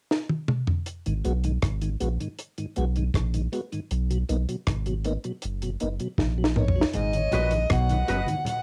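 Dub reggae at 79 BPM in G# minor, hypnotic and meditative, this short cut from a longer piece has the light reverb and soft grain of a home cassette recording. A deep reggae drum kit opens with a fill, its dry, dark sound built on a tight kick and a high-tuned snare up front, and a second fill comes at 6.2 seconds. From 1.1 seconds a soft, round sub bass with tube saturation sits up front, while a mellow tonewheel organ with key click and slow rotary speaker holds the chords, moving from G#m7 to Bmaj7. At 6.6 seconds a dark, woody fiddle takes the melody up front, bowed with light vibrato and trailing dub echo. The closing section brings an overdriven, stringy clav riff in the background, very quiet low-tuned congas, and a bright semi-hollow electric guitar with ensemble chorus and dub echo from 7.3 seconds.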